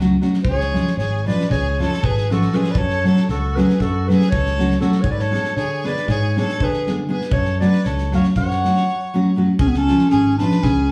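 A short fragment of Balkan wedding-band folk opens with a dark, roomy clarinet carrying the melody in a classical style, up front and set against a full-bodied, fingerpicked nylon-string guitar, a growly fingered electric bass with a direct, amped tone, and a loose acoustic drum kit of tight kick and medium-tuned snare in a pumping small room. The music moves at 237 BPM counted in eighths, in a straight 9/8, in F# harmonic minor tuned to A4 = 441 Hz, with a restless, bittersweet mood. At 0.5 s a single bowed violin enters on a second line, biting and intense with vibrato, sitting distant in the mix and trailed by tape echo. The harmony cycles through C#, F#m, G#dim and back to F#m, returning to C# at 9.6 s as the section repeats. A wet small-room reverb places the band further back in the space, giving the whole ensemble a distant, roomy atmosphere.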